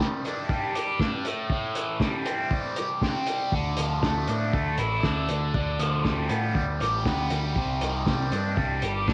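A biting, double-tracked overdriven guitar riff and a muffled, cloth-damped drum kit with a fat snare and tight kick open this jangly, wistful indie rock excerpt at 119 BPM in G mixolydian, the guitar bright and up front with a phaser. A growling, overdriven picked bass joins at 3.5 seconds as the chords move from Cmadd9 through Am7, Dmadd9 and G7/D. A home cassette recording with light reverb lends the guitar and the gritty, rolled-off drums a saturated lo-fi character.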